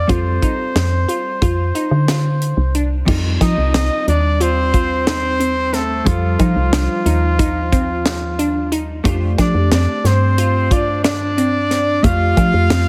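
A punchy, close-miked trumpet with light vibrato carries the melody from the first moment over a dark, clean hollow-body jazz guitar kept in the background, glassy, crystalline wavetable pluck arpeggios with chorus and delay, and a woody, round FM bass up front, with a tight funk kit of high-tuned snare, crash, hi-hat and kick joining at 0.1 seconds and a breathy, subtoned alto saxophone with scooped notes adding a second line from 3.4 seconds, all driving and bright in an uneven 9/8 progressive groove with a heavily compressed, radio-like sound.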